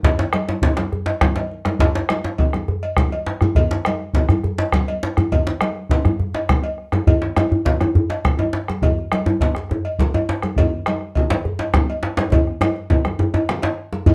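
A straight 12/8 pulse at 137 BPM in dotted quarters drives this earthy, powerful West African drum ensemble excerpt, where a round bombo and a medium-tuned djembe sit up front, a tight, cracking second djembe stays in the background, ringing congas played with hard hands and a metallic cowbell add band-limited vintage color, and a moderate studio reverb and dark production frame the whole, which closes with a drum fill from 12.3 to 14.1 seconds.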